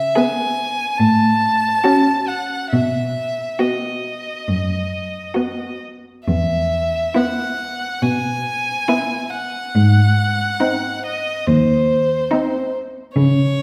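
A clear, close solo violin opens this tender, rubato excerpt from a slow romantic string quartet movement, singing the bowed melody with smooth, even vibrato. At 0.2 seconds a rich second violin and a more distant viola join beneath it with second-line and accompaniment parts, and from 1.0 seconds an up-front cello supplies the bass. The quartet sits in a wet scoring-stage reverb, heard from further back in the room, as the harmony settles from F#m/A toward E and a closing G#7.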